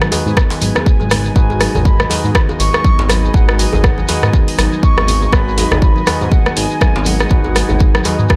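A distant, pure flute with vibrato and tape echo leads this driving, hypnotic afro house excerpt at 121 BPM in G# minor. It floats over a detuned, chorused pad holding a G#m7 chord, dry marimba arpeggios, bell-like electric piano stabs and a smooth sawtooth bass with tube saturation, with the pad, marimba, piano and bass all pumping from sidechain compression. A swung house kit of hi-hat and rim click, bright congas, cracking djembe and grainy shekere sit underneath, joined by a punchy, up-front kick that lands at 0.4 seconds, all captured in a gritty hardware recording with studio reverb.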